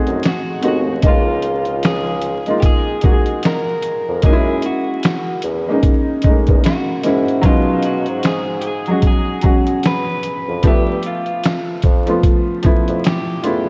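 Lo-fi hip hop at 75 BPM in 4/4 with a swung sixteenth-note feel, this hazy, melancholic excerpt drifts through a dreamy mix soaked in lush hall reverb and vinyl crackle. A felt-muted upright piano opens at 0.0 s, sitting up front with a soft, mellow, intimate tone, short sustain and a cassette-tape sheen as it carries the chords from Ab7b9 through Db6, Gb7, B6 and G13. A pitched-down, compressed sampler-style drum kit arrives at 0.1 s with a thumpy kick, medium-tuned snare, hi-hat and finger snaps, muffled yet placed prominently in the mix. The bass line comes from a dark bassoon in a classical style, with light vibrato and a soft attack, sounding distant and roomy in its low register. From 0.3 s an electric guitar through a small old amp picks a quiet melody, slightly broken-up and bathed in spring reverb and analog delay. The whole piece stays in one section, cut from a longer work.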